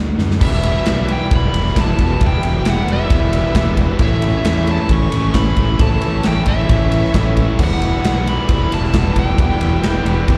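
A huge arena drum kit sits up front in this gritty, brooding classic rock excerpt at 134 BPM in E dorian, its punchy kick and bright cymbals ringing through a pumping hall after an opening fill, while a fuzzed, round fingered bass growls beneath. Overdriven electric and semi-hollow guitars churn out riffs with slapback echo from the start, a third, double-tracked semi-hollow riff joins at 0.4 seconds, and a biting lead guitar sings high with overdrive, slapback and tape echo over chords moving from Emadd9 to A and back. Tucked deep in the mix are a dark, woody upright piano, a picked dreadnought acoustic guitar with finger squeak, a tonewheel organ turning through a slow rotary speaker with key click, and barely audible, distant handclaps entering at 0.9 seconds, with the band heard as a live gig through the venue's PA.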